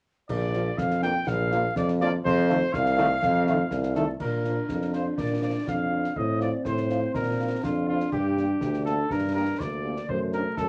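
Vinyl crackle and a moderate small-room reverb frame this festive, proud military-style wind band march in Bb major at 122 BPM in 2/4: an up-front cornet with light vibrato carries the melody over a clear tuba bass, very quiet airy flutes, a distant dark French horn section, and bright clash cymbals with concert bass and snare drums, while a background trombone section holds sustained chords until 4.0 s and a mellow, close-miked euphonium takes up a second line from 4.2 s.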